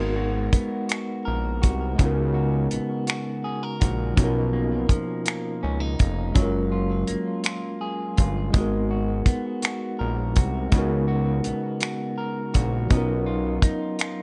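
Sensual and unhurried, this slow six-eight R&B excerpt moves at 55 BPM, tuned to A4 = 441 Hz, over a G#m9, C#13sus4, Bmaj9#11 and F#maj9 progression. A clean tine electric piano carries the accompaniment, while a slightly broken-up, fingered electric guitar adds a second line through tape echo. A fat, detuned sawtooth analog bass with a filter sweep sits up front until 13.7 s, and a dry, tight damped 70s drum kit of finger snaps, hi-hat and kick enters at 0.5 s, with light reverb and a soft, rolled-off top end.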